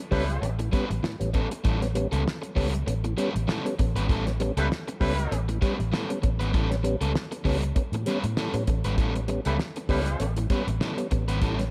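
A lightly swung sixteenth-note groove in 4/4 drives this gritty funk excerpt, with a dry 70s drum kit's fat snare and tight kick under a round, punchy, foam-muted electric bass up front, a crunchy overdriven guitar with spring reverb accompanying throughout, tonewheel organ stabs carrying key click, overdrive, a slow rotary speaker and tape echo, and a distant, roomy horn section slipping in brief second-line phrases at 0.1, 4.6 and 9.4 seconds, over a single A9 chord in a small room.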